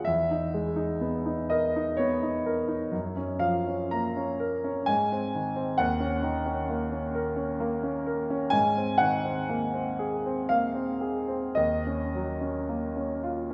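A clear concert grand piano opens on an Emaj7#11 chord, and it plays alone throughout this 13.5-second passage from a longer impressionist classical piece. The mood is wistful and mysterious, set in Eb minor and moving in a slow, rubato 3/4 that drifts between 52 and 67 BPM. The harmony glides from Gbmaj7 through Ab and Ebm7 to an Ab9 near 8.6 seconds, settling on Ebm9 at 11.5 seconds. The piano spans Eb2 to Bb5, its deep bass anchoring an open, clear upper register. A wet scoring-stage reverb with a 1.7-second decay places the listener further back in the room, so each chord hangs in a halo of space.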